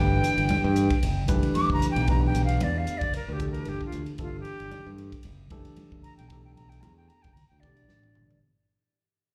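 A breathy, straight-toned concert flute solo with slapback echo opens this bright, funky electric jazz fusion clip in G major at 113 BPM with a light 16th-note swing, over a barky, overdriven, phased tine electric piano on Gmaj9 and a direct, up-front fingered electric bass, joined at 0.2 seconds by a crisp drum kit with high-tuned snare and tight kick and by very quiet, soft-handed congas, the live band heard through a club PA and reverb as the passage fades out and a drum fill arrives at 7.9 seconds.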